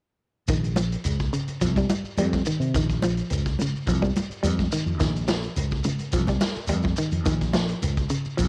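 Afrobeat at 106 BPM in Bb dorian, intense and funky, this short cut from a longer piece has a dark, clean semi-hollow electric guitar playing arpeggios with a cassette tape tint over a round, punchy fingered electric bass sitting up front, a vintage drum kit with a punchy kick and rolled-off top also carrying cassette tape colour, ringing high-tuned congas in the background, and a grainy, distant shekere, all moving between Bbm and Cm from 0.5 to 8.5 seconds in a home cassette recording with light reverb and small room ambience.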